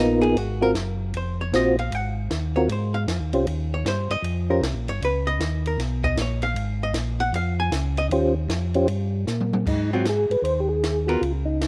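Soulful and swinging, this soul jazz organ trio cut from a longer piece moves at 155 BPM in 4/4 with a swung eighth-note feel in A-flat mixolydian. A soft, flute-like tonewheel organ carries the melody with second-harmonic percussion, chorus vibrato and a slow rotary speaker, dropping out at 4.6 seconds and returning at 8.1 seconds. Up front, a clean, picked hollow-body archtop guitar, miked and amplified with a dark tone, takes a solo through the opening stretch while a second tonewheel organ supplies a smooth bass line with audible key click through its own slow rotary speaker. A compact cocktail drum kit sits lower in the mix with a punchy kick, high-tuned snare and dark cymbals, and a drum fill leads into a new section at 9.7 seconds. Harmonies move through rich thirteenth and suspended chords before settling on a bare Ab5, all set in light reverb and a small room ambience.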